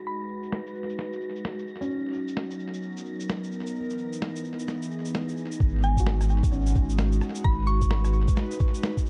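A swung 16th-note groove at 130 BPM in 4/4 drives this rainy, nocturnal future garage excerpt in G# minor, with a compressed, pitched-down electronic shaker, medium-tuned snare and rim click entering at 0.4 seconds, their muffled, tape-warm tone roughened by 12-bit sampler grit and carried on studio reverb and tape echo. Underneath, a breathy, full-bodied pad holds detuned, chorused chords through G#m7, Bmaj7/F#, Emaj7 and back to G#m7, while a felt-muted upright piano sits in the background with audible action noise, its intimate accompaniment pumping against the beat and trailing dub echo. Both the pad and the piano move through a filter sweep in the opening section, and a faint wind-like tuned noise texture hovers high above, bathed in its own reverb, until the second section arrives at 5.6 seconds. There a thumpy, up-front kick and a deep, round sine sub bass on G# enter together, the bass pumping and anchoring the low end. 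A woody, FM-style mallet pluck plays a brief melodic figure at the start and returns in this later section with chorus and tape echo, all within a lightly reverberant, echo-heavy, low-pass-filtered mix.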